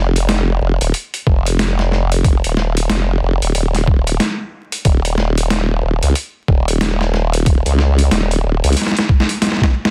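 Funky and gritty, this glitch hop fragment cut from a longer piece moves at 92 BPM in 4/4 with a swung sixteenth-note feel, opening on a formant-filtered wobble bass of sawtooth and sine tones, sustained and chorused, that holds the low end until 8.7 seconds. A pitched-down, sampler-style boom bap kit with a high-tuned snare and hi-hat enters almost at once, joined at 1.3 seconds by a thumpy electronic kick, both overdriven and placed up front with studio reverb, before a drum fill closes the passage from 8.8 seconds. The mix is dense and heavily limited, fairly dry overall, with a layer of vinyl crackle beneath it.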